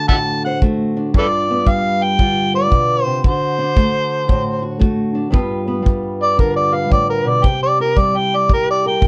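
An overdriven, gritty harmonica with light vibrato, tongue slaps and scooped jazz-style notes leads this rollicking, swung acoustic country blues fragment and takes a solo from 5.3 s over the G7 and C7 changes, while a woody, fingerpicked ladder-braced acoustic guitar on old strings and a tight, natural small-room kick played with brushes sit up front in a dark production with light reverb.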